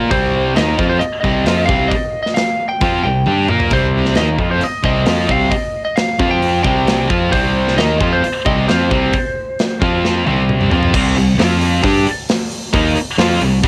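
Heavy and aggressive, this hard rock excerpt drives along in a straight 4/4 feel, with a high-gain distorted guitar riffing up front over a second, compressed distorted guitar in the background, a dark, round picked bass and a tight metal drum kit with bright cymbals and a tight kick in an airy big room. A twangy, slightly broken-up lead guitar carries the melody until 10.4 seconds, and drum fills at 3.3 and 10.0 seconds mark the turns, the second leading into a new section at 10.9 seconds. The whole thing has the light reverb and character of a home cassette recording.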